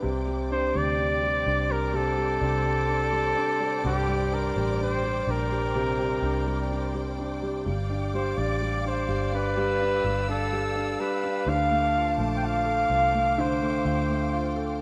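Hopeful and emotional, this slow pop ballad fragment opens on a Csus2 chord, moving to G7 and then Dm7. An intimate grand piano with audible action noise and long sustain shares the foreground with a round, foam-muted electric bass, while a lush bowed string section holds sustained chords high above. From 0.5 seconds a clear, jazz-tinged flugelhorn carries the solo melody with light vibrato, all set in moderate plate reverb within a rough home-demo mix.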